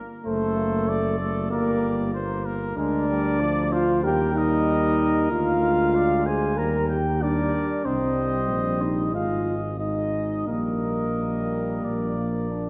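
Stately and noble, this excerpt from a longer classical brass quintet piece moves in 4/4 with a flexible, rubato feel. A warm trumpet carries the melody while a second, mellow trumpet adds a distant, roomy line alongside it. A close-miked French horn with light vibrato fills in the middle as the most prominent voice. The tuba sits up front with a soft attack and smooth top, and a clear, punchy trombone supports from the background. The trombone sounds first at 0.2 s, the other four join at 0.3 s, and all five play together until 12.7 s. The harmony travels from D7/F# through Gm and Eb toward a close on Bb, and a generous scoring-stage reverb surrounds the ensemble in a dark production.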